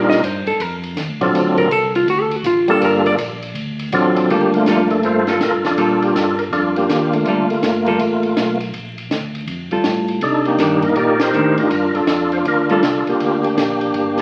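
Late-night and smoky, this soul jazz organ trio cut swings at 162 BPM in G minor, heard through the crackle and haze of a very old 78 rpm record. A dark, clean hollow-body electric guitar takes a solo over the opening 4.3 seconds, moving through Ebmaj7, D7#9 and Gm9 before settling into accompaniment until it drops out at 12.8 seconds. Up front, a full, percussive tonewheel organ carries the melody, lightly overdriven with second-harmonic percussion, chorus vibrato and a slowly turning rotary speaker. Beneath it, a fat organ bass line with audible key click and its own chorus vibrato anchors the low end through a stationary speaker. A compact, dry cocktail kit with a punchy kick, high-tuned snare and dark cymbals keeps time from 0.1 seconds, and the band lands an accent together at 11.1 seconds as the harmony moves through Cm9 back to Gm9. A moderate large-studio reverb gives the trio a roomy, nocturnal glow.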